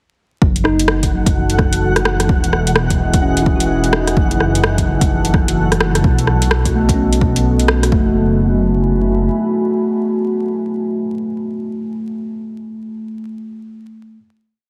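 A skittering, shuffled two-step groove of muffled, overdriven kick, metallic hi-hats and rim clicks drives this nocturnal, ghostly future garage piece, as a rumbling detuned saw bass and a deep, moody pad pump beneath scattered notes from a clean tine electric piano and a flickering, grainy held high note, the whole heard through a heavily compressed radio sound with vinyl crackle until the drums stop at 7.9 seconds and a final chord rings out to 11.7 seconds.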